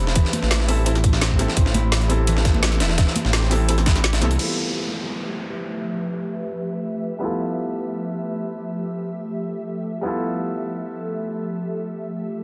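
Uplifting and lush, this liquid drum and bass excerpt in straight 4/4 opens on an Am7 chord with a full groove. A tight electronic kick, a woody-snared kit with metallic hats, and a gritty, pitched-up breakbeat layer with a high-tuned snare drive the beat, while bright congas sit in the background. Up front, a deep, rumbling detuned saw bass holds the low end, and the kick drops out at 4.0 seconds just before the rhythm section stops. At 4.4 seconds the harmony shifts to Fmaj9#11 and an electronic downlifter sweeps in, leaving a soft felt-muted upright piano, with audible action noise and a filter sweep, beneath an ethereal, airy pad treated with ensemble chorus. A ringing, fingerpicked concert harp plays arpeggios through digital delay until 6.7 seconds, and the dense, heavily limited master carries a light digital ambience.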